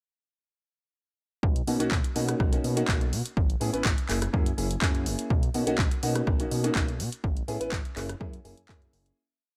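This short, funky and sunny piece of filtered disco house opens at 1.4 s straight into its drop. A punchy four-on-the-floor electronic kick sits up front beside a fat, nasal, detuned sawtooth bass that jumps octaves and pumps against the kick, all at a straight 124 BPM in 4/4 in B major. A programmed analog drum machine adds closed and open hi-hats, handclaps and rim clicks on the backbeat, with tape-warm colour and hats that pump with the sidechain. A dark, mellow baby grand piano plays a rhythmic chord riff in rootless voicings. Its boxy, worn tone is treated with phaser and pumping, and audible action noise lends an intimate feel. The harmony cycles twice through Bmaj7, A and F#7 in a dry, close mix, and a fade-out begins at 6.6 s and runs to the end at 9.2 s.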